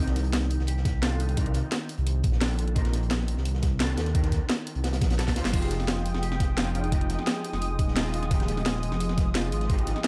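A rolling, straight 4/4 drum and bass groove at 173 BPM drives this melancholic liquid drum and bass passage in F minor, cut from a longer piece. Two drum kits stack up: an overdriven, up-front electronic kit with a cracking snare, bright hats and crash cymbal, and a crunchy acoustic breakbeat kit sitting in the background with a dark, rolled-off top and filtered hats, snare and room, while a gritty, thumpy sampled kick enters at 0.9 seconds and a drum fill arrives at 5.2 seconds. Underneath, a deep, rumbling detuned saw bass sits up front, its saturated tone beating against itself. A clean, picked hollow-body jazz guitar carries the accompaniment throughout, shaped by a filter sweep, ensemble chorus and tape echo, while a mellow, fingered electric guitar plays a melody in the background, drenched in lush chorus and tape echo. At 5.5 seconds the harmony moves from Cm9 to Fm9 and a thick, nasal unison pad with a soft attack and long release spreads sustained chords over the top, all held in a light reverb.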